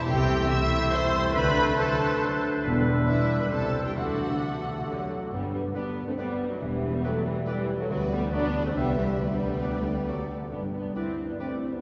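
Quirky and mischievous, this whimsical cinematic film cue in G major moves at 138 BPM in 3/4, with a rich violin section carrying the melody over a second violin line, clear clarinet, oboe and an airy, hollow flute section, while a smooth viola section, a warm bassoon, a mellow French horn section holding sustained chords and ringing fingerpicked harp arpeggios fill the accompaniment above a dark cello section and focused double bass section, all bathed in a wet cathedral reverb that sets the orchestra far back in the room, from a passage cut from a longer piece that shifts into a new section at 5.3 seconds.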